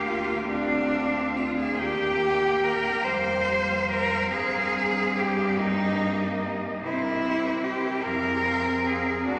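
Bathed in a long, wet cathedral reverb, this serene, tender classical excerpt for four cellos moves in a rubato 6/8 at 48 dotted-quarter beats per minute in Eb major. The high melody cello sits in the background with a rich tone, soft attack, expressive vibrato and portamento, while a clear, focused second cello sounds close and up front. Beneath them a smooth, even accompaniment cello and a focused bass cello with a smooth top carry the harmony, all four bowed with vibrato throughout the 9.4 seconds as the chords drift from Bb/D through Eb and C7 to Fm.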